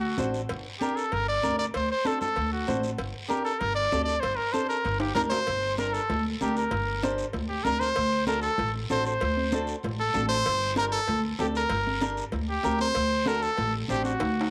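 Latin cumbia at 193 BPM in G harmonic minor, fiery and danceable, with an up-front trumpet carrying a bright, lightly vibrato-tinged melody over a woody, thumpy pizzicato upright bass, boxy fingerpicked flamenco guitar, high-tuned ringing congas, a raspy guiro, and metal-shell cowbell and timbales tucked into the background, the whole mix set in moderate spring reverb, with a drum fill at 5.0 seconds leading into the second section.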